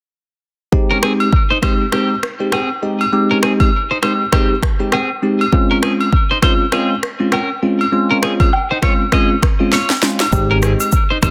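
Dense, heavily limited modern sound with light digital reverb frames this joyful, sunny afrobeats clip at 100 BPM in Ab major with swung 16ths, where a bell-like tine electric piano through phaser sits up front over an electronic drum kit of deep kick, sharp snare, rim click, shaker and finger snaps, a clean, twangy picked electric guitar riff shimmers in lush chorus and delay, distant agogo bells and woodblock ring in a large room, the harmony moves from Abmaj7 to Dbmaj7 at 5.5 seconds, and after a drum fill a punchy fingered electric bass enters at 10.3 seconds as the chords return to Abmaj7.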